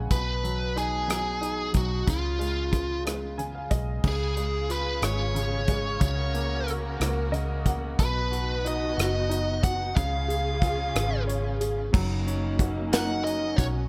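A romantic, swaying six-eight pop ballad, this excerpt sets a biting, overdriven lead guitar melody with delay up front over a brilliant, woody and slightly detuned upright piano that adds short fills. An up-front acoustic drum kit with bright cymbals and a tight kick plays alongside a dark, round, punchy, foam-muted electric bass, and a studio reverb surrounds the band. Expressive bowed strings with vibrato and portamento enter at 4.0 seconds with sustained chords, and a mellow French horn section joins at 11.9 seconds with a second line.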